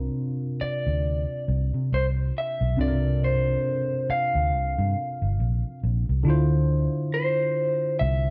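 A slow 4/4 groove at 69 BPM with a lazy swing on the sixteenths sets up this short, smooth neo-soul and R&B fragment, cut from a longer piece. A worn, slightly out-of-tune tine electric piano with a phaser holds the accompaniment from the start, sitting up front alongside a round, foam-muted vintage fingered electric bass that anchors the low end. At 0.6 seconds an electric guitar through a small old amp takes the melody in a narrow upper range, its picked, slightly broken-up tone given a lo-fi, compressed edge and a slapback echo. The harmony rests on C7sus4 before moving to Dm7 at 6.3 seconds, where a new section begins. Light reverb and a dark, warm production give the whole a smooth, warm feel.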